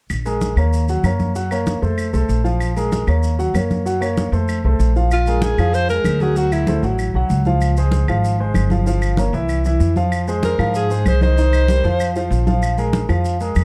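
A straight 4/4 groove at 192 BPM drives this fiery, sophisticated Afro-Cuban jazz excerpt in B-flat minor, with a pizzicato upright bass of woody steel strings up front, congas struck with hard hands and a thick skin in the background, distant claves, and grainy, mellow maracas. A concert grand piano with deep bass, an open tone and long sustain comps through plate reverb from 0.3 seconds, cycling through Bbm7, Ebm7, Gbmaj7 and F changes before the harmony shifts at 5.1 seconds. At that point a warm alto saxophone solo enters up front with vibrato and subtone, colored by plate reverb and tape echo, returning briefly near the end within a dark, lightly reverberant mix.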